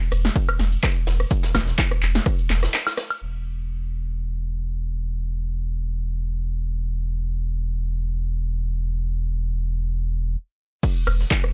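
A gritty, trippy acid house excerpt at 126 BPM opens on a deep, round sine sub bass pumping under sidechain. With it come an overdriven analog drum machine firing punchy snare, handclaps, hi-hat, rim clicks, woodblock, ride and crash, a dark brushed kit with shaker murmuring in the background, and a distorted electronic kick arriving at 0.4 seconds. After a band accent and short break, the drums fall away at 3.2 seconds, leaving the sustained bass alone until the percussion returns at 10.8 seconds, all of it lightly swung and set in a small, dry room with a raw hardware edge.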